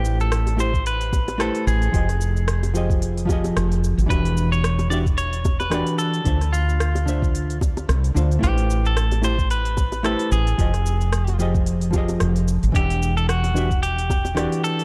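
A woody fretless electric bass sits up front in this smooth, relaxed sunset chillout excerpt, its round, amped tone thickened by ensemble chorus across the low register. A bright, twangy clean electric guitar carries the melody with a picked, compressed attack, trailing tape echo and shimmer reverb. Beneath it, a hollow-body jazz guitar plays fingered accompaniment in a dusky, clean voice that also glows with shimmer reverb, moving through Am9, Fm9, Em9 and Dm9 chords. A smooth R&B kit of cabasa, silky hi-hat and rim click comes in at 0.1 seconds, and a soft, tape-tinged electronic kick joins at 0.7 seconds, all with a swung sixteenth-note feel. Low-tuned, close and dry bongos, played with soft hands, sit quietly in the background under a light reverb and a warm, dark production.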